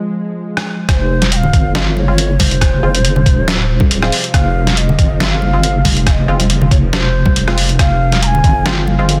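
A dense, heavily limited and nearly dry mix opens this dark, heavy deep dubstep excerpt in F minor, where a tense, string-like drone sits very quietly beneath everything before the drop lands at 0.9 seconds, bringing in a deep, wobbling bass up front with chorus alongside a gritty, thumpy pitched-down kick. Moving at 139 BPM in a half-time 4/4 feel with a light swing, the groove gathers a compressed trip hop sampler-style kit of hi-hat, rim click and medium-tuned snare, hard-handed congas close and dry in the background, and muted, detuned chord stabs with a filter pluck, chorus and dub echo. Over the top, a breathy, mellow ney plays an expressive, distant melody with vibrato, trailing dub echo, and the piece is cut from a longer work.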